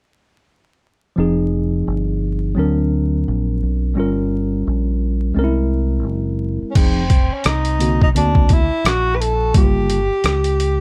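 This cool, smoky jazz-hop excerpt opens at 1.2 seconds with a worn, slightly out-of-tune tine electric piano comping clean, direct and up front over a round, dark fingered electric bass that is direct, amped and equally up front. The harmony cycles through Fm7, D7b13, Gm7b5 and C7b13, with a gentle swing on the sixteenths. At 6.7 seconds a mellow tenor saxophone begins a jazz-style solo with a soft attack, scooped notes and light vibrato, its distant, roomy tone trailed by analog delay. A boom bap sampler-style kit arrives moments later, gritty, compressed and pitched down, its thumpy kick, hi-hat, rim clicks and crash cymbal sitting louder than the other parts. The electric piano drops out at 10.0 seconds while bass, sax and drums carry on, all under a dark production with tape-warm drums, light reverb and a bed of vinyl crackle.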